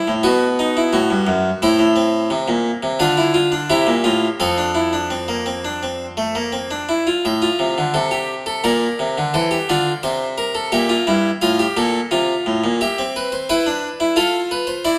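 Contemplative and serious, this baroque-style four-part fugue in F major moves at a steady 87 BPM in straight 4/4, played on a solo French-style harpsichord whose plucked, nasal, thin and bright tone sits up front across a range from F2 to G5. A wet stone room gives the sound a reverberant halo with a 1.3-second decay, while the harmony travels through minor chords and dominant sevenths before the second section, from 7.2 seconds, settles toward F major by 14.2 seconds. The passage is cut from a longer piece.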